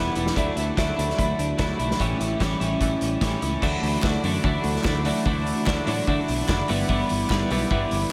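Two jangly twelve-string electric guitars open this wistful indie rock excerpt in D major at 147 BPM, one warm and touched with spring reverb, the other bright, twangy and up front through lush chorus and analog delay, over a growly picked electric bass. A loose acoustic drum kit with a punchy kick and dark cymbals joins at 0.2 seconds, while a hollow group handclap sits barely audible from 4.0 seconds. The chords move from Dadd9 to A7 and back to Dadd9 before settling on G6, all inside a dreamy mix soaked in a huge ambient reverb.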